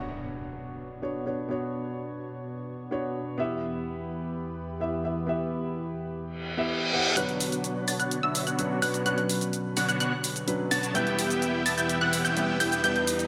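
Festival progressive house at 127 BPM in B minor, anthemic and emotional, opens on an electronic impact as a dark, intimate concert grand piano with audible action noise and tape echo plays over a warbling, chorused vintage pad moving between Bmadd9 and Em. Then, after a reverse cymbal, at 7.2 s a huge, detuned supersaw riff under a filter sweep, a bright, punchy unison pluck arpeggio and a layered, low-pass-filtered electronic hi-hat and shaker join the build-up alongside a riser inside a lush 1.9-second hall reverb.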